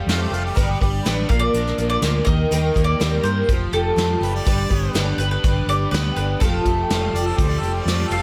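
Folk rock with a heartland rock drive, this short, nostalgic, open-road cut moves at 124 BPM in a straight 4/4, with a woody mandolin carrying the melody over a shimmering, octave-doubled twelve-string acoustic guitar treated with ensemble chorus and a bright, overdriven garage guitar riff that is double-tracked. A clear harmonica with vibrato adds a second line, sounding from 0.1 to 1.2 seconds and returning at 4.2 seconds, while a dark, round fingered electric bass sits up front beside a soft brush drum kit with a tight kick and medium-tuned snare, captured with a natural studio-room sound. Chords move through Fadd9, G, Bb and Eb under light reverb.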